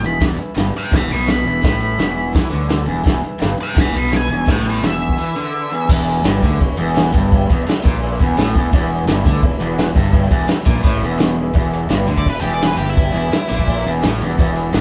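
Swaggering and raw, this garage rock fragment drives a bright, double-tracked crunchy guitar riff over a growly fuzz bass and a punchy, up-front vintage drum kit, while a dark octave-fuzz lead guitar carries the melody until a break at 5.2 seconds, a reedy overdriven combo organ holds chords in the background and adds a fill at 8.0 seconds, very quiet crisp handclaps sit beneath, and a lead guitar solo arrives at 11.6 seconds, the band captured playing live in one room with a moderate studio reverb.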